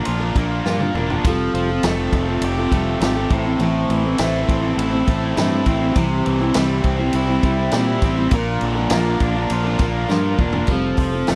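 Folk rock with a heartland rock lean, this short excerpt from a longer piece moves in a straight 4/4 with a jangly, nostalgic mood. A full-bodied picked acoustic guitar carries the accompaniment from the first moment, joined by a biting, double-tracked overdriven electric guitar playing a riff. A punchy fingered electric bass and a vintage drum kit, with a tight kick, medium-tuned snare and rolled-off top, come in almost at once, and the drums play fills at 0.7 and 10.1 seconds. At 1.2 seconds a very quiet, bright string section enters with sustained chords, bowed with light vibrato, and holds until 10.7 seconds. The harmony moves from Bb through Fadd9, Am and C before circling back. The sound is a dry, close 1970s-style studio recording with light reverb.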